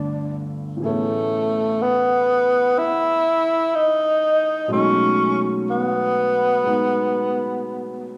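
Jazz in a wistful, melancholic mood at a slow 62 BPM with swung eighths, cut from a longer piece, where a breathy, whispered tenor saxophone sits up front carrying an intimate melody with vibrato, soft attacks and scooped notes, while a warm concert grand piano with deep, natural bass accompanies through G9, Amaj9 and B13 chords, heard from further back in a wet, large studio reverb.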